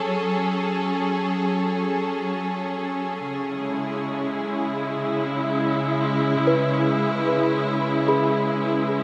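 A rich, smooth studio string section sits up front with light vibrato, holding sustained F#madd9 and C#m7 chords in free time through this reflective, serene ambient fragment bathed in a long shimmer reverb, while a small, bell-like celesta enters in the background at 6.5 seconds with delicate arpeggios trailed by a diffuse ambient delay.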